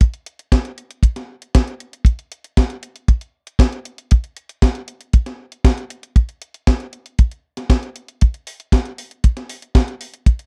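A dry, tight acoustic kick drum sits up front with a rolled-off top, driving this danceable, nostalgic italo disco excerpt at 117 BPM in straight 4/4, while a gated 80s digital drum machine plays sampler-style hi-hat and a gated-reverb snare further back, re-recorded in a large room, across the 10.5-second cut from a longer piece.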